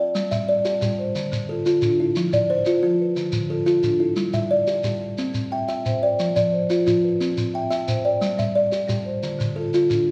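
A rippling 12/8 cycle at 119 BPM in dotted quarters drives this southern African traditional piece, an mbira-style interlocking pattern in G mixolydian that moves through G5, Dm, F and C in a short loop cut from a longer performance. A buzzing, woody kalimba with a hollow-box, fingertip pluck sits up front with dark, smooth arpeggios from 0.0 seconds, joined almost at once by a grainy, band-limited shekere and a round soft-mallet marimba on padauk bars spinning arpeggios in the same range. The trio plays live in one room, bathed in a generous large-studio reverb that lends the mellow, warm mood a gentle glow.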